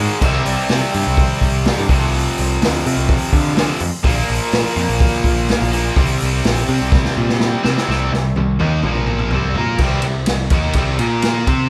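A bright, overdriven electric guitar riff opens this swaggering, brooding classic rock passage, cut from a longer piece, alongside a tight distorted guitar set in the background and an up-front, growling picked bass, joined at 0.2 seconds by a vintage acoustic drum kit with dark cymbals and a punchy kick that plays fills from 6.9 to 9.8 seconds, the band sounding live in one large studio room with moderate reverb.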